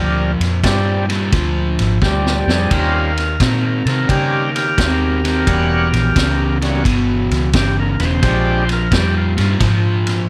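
Electric blues shuffle with a laid-back, swaggering swing, heard as a short cut from a longer piece. An overdriven tonewheel organ sits up front with a thick, gritty tone and audible key click, its slow rotary speaker turning as it carries the accompaniment until 9.5 seconds. Alongside it, an overdriven semi-hollow guitar carries the picked riff with a hollow-body warmth, while a vintage foam-muted fingered bass gives round, punchy low end. A vintage drum kit enters at 0.4 seconds with a saturated studio-room sound, dark cymbals, a high-tuned snare and a tight kick, and it plays a fill just before the harmony moves. The changes run from Bb13 to Eb13, through Edim7 and back to Bb13, all inside light reverb.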